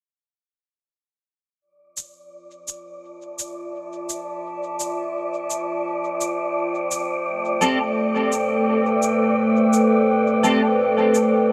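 A lightly swung 16th-note feel in 4/4 underpins this deep, hazy ambient dub excerpt, where an electronic, tape-toned cabasa ticks quietly from 2.0 s. A wind-like, breathy noise texture drifts in, and a warbling, nostalgic pad, detuned and lo-fi with chorus and a sub octave, fades in up front, holding Fmaj7 before moving to Am7. At 7.6 s a clean, picked electric guitar adds dark stabs through ensemble chorus and dub echo, all set in a light digital ambience with dark, warm production.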